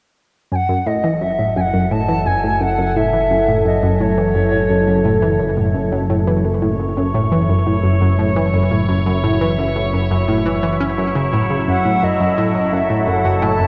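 At 0.5 seconds a bright, airy wooden flute and a round analog pluck enter together over a single F#m7 chord. Together they open this cosmic, mysterious piece of sequencer-driven space music in F# dorian, played at 86 BPM in a straight 4/4. Up front, the pluck carries the riff with a detuned blend of sawtooth and square tones, edged by a noise layer, ring modulation, a filter sweep, chorus and delay. The flute sings the melody above it with vibrato and tongued notes, sounding distant yet expressive through its delay, then pauses before returning at 11.7 seconds. From 1.3 seconds an evolving wavetable pad morphs through sustained chords with a slow attack, phaser and its own reverb, and from 1.6 seconds an analog drone holds a deep F#1 bass beneath, its pulse-width modulated tone thickened by chorus. A huge ambient reverb and the warble of worn cassette tape with drifting pitch wrap the mix, and the passage is cut from a longer piece.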